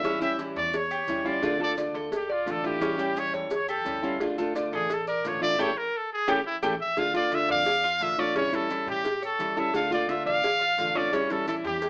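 A straight 4/4 pulse at 173 BPM drives this sultry Cuban son and guajira piece in D harmonic minor, alternating between A7 and Dm. Up front, a bright, punchy trumpet with light vibrato solos through the first 7.0 seconds, reaching a band accent at 5.6 seconds, over full-bodied fingerpicked nylon-string guitar and metallic double-string tres arpeggios. A woody pizzicato upright bass, tight high-tuned cowbell and grainy maracas sit in the background, with the band playing live in one room under moderate reverb and an AM radio sound.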